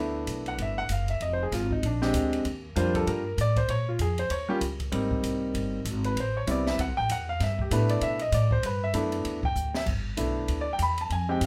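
A clear, naturally voiced concert grand piano takes the solo from the first second, its long sustain and deep low end carrying a sophisticated, relaxed swing at 194 BPM through changes like G6, Fm, Ebmaj7, Abmaj7 and Am9. Up front beside it, a woody pizzicato upright bass with steel strings holds down the low register, while an open acoustic drum kit with a high-tuned snare, boomy kick, hi-hat, ride and crash sits further back and enters at 0.3 seconds. A short drum fill at 9.6 seconds turns the trio back into a repeat of the opening section, all set in a moderate studio ambience in this piece cut from a longer performance.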